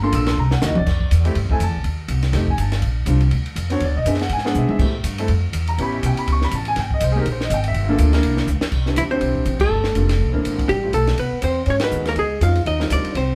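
A relaxed, brisk small-group swing excerpt at 244 BPM opens with a warm baby grand piano accompanying up front, a woody, growly pizzicato upright bass, and a dry cocktail drum kit with dark cymbals, a high-tuned snare and a punchy kick, which plays a fill at 0.4 seconds. At 9.0 seconds a clean, compressed hollow-body electric guitar takes the melody while a breathy, whispered trombone with light vibrato sits distant on a second line, and the band hits accents together. The group sounds heard from further back in a modestly reverberant studio room.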